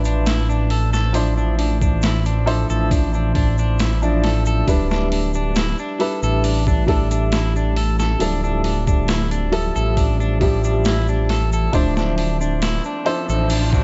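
A boom bap, sampler-style drum kit sets a slow, straight 4/4 pulse at 68 BPM, its thumpy kick, high-tuned snare and hi-hat sounding compressed, pitched down and gritty, with overdrive and studio ambience, while a tube shaker sits in the background with an acoustic, live-room feel. This smoky, brooding trip hop passage in D dorian, cut from a longer piece, rests on a deep, rumbling detuned saw bass that sits up front, its beating unison tone sustained yet mellow. A warm upright piano carries the accompaniment with a woody, intimate sound, audible action noise and long sustain, colored by tremolo, vintage 12-bit sampler grit and tape echo. An electric guitar at the edge of break-up plays twangy, fingered arpeggios, also treated with tape echo. The harmony moves from Dm9 through Em7/D and Fmaj9/D before returning to Dm9, all inside a digital ambience that holds nothing above 7.8 kHz. An electronic riser enters in the background at 12.8 seconds and runs to the end at 13.8 seconds.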